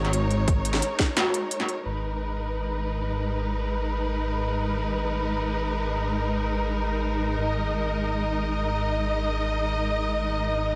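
A heavy, spacious half-time drum and bass excerpt in G# minor, floating in free time, opens on a drop where an overdriven industrial kit of clanging snare and crisp hats plays from the start, joined by a hard-clipped electronic kick from 0.5 to 1.1 seconds, all beneath lush bowed strings with vibrato and portamento that pump against the sidechain and a dark, rumbling, detuned saw bass with tube saturation holding G#1, the strings and bass sustaining alone after 1.9 seconds as the harmony moves from G#sus2 to G#madd9 in a moderate echo-chamber reverb.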